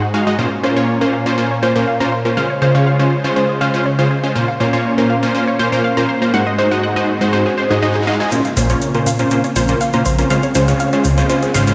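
A lush, detuned unison pad with chorus and phaser and a round, warbling analog pluck playing arpeggios through a filter sweep open this expansive, driving progressive house excerpt together. They are joined almost at once by punchy, airy supersaw stabs, with dub echo on both the pluck and the stabs. A very quiet riser enters at 5.8 seconds, and the build-up from 8.3 seconds adds an overdriven electronic hi-hat and a grainy cabasa in the background, followed at 8.6 seconds by a fat, sawtooth analog bass up front, all set in a moderate hall reverb and the stone echo of a bare room heard over a big sound system.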